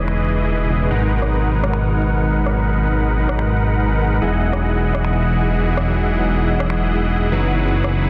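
An excerpt of euphoric, bright future bass at 145 BPM in a half-time feel opens with huge, detuned supersaw chords with a moving notch, low-pass filtered and echoing with delay, over a thick, saturated saw bass with chorus and a mellow tine electric piano, all moving through C#m9/E, G#m7, Emaj9 and F#7sus4 in E lydian. Behind them sits a very quiet, ethereal pad with a slow attack, long release and phaser shimmer, while an overdriven trap kit of finger snaps, metallic hi-hats and rim clicks stays in the background from 0.1 to 7.9 seconds. The mix carries light reverb and a dense, heavily limited modern master.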